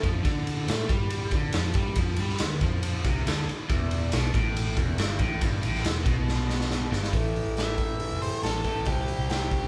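A straight 4/4 pulse at 139 BPM drives this swaggering, driving slice of blues rock power trio and southern rock, cut from a longer piece. The raw garage drum kit sits up front, with a punchy kick, a medium-tuned snare, hi-hat and ride cymbal, all saturated and gritty in a pumping stone-room sound with a rolled-off top. A bright, overdriven electric guitar riff, picked, double-tracked and compressed, moves through D5 and E5 power chords. Beneath it, a vintage fingered electric bass gives a dark, round, foam-muted and amped low end. A drum fill from 6.3 to 7.1 seconds leads into a new section on A5 and C5, where an octave-fuzz lead guitar enters at 7.6 seconds with a dark, picked, distorted melody. The band plays live in one room, held together by a moderate large studio reverb.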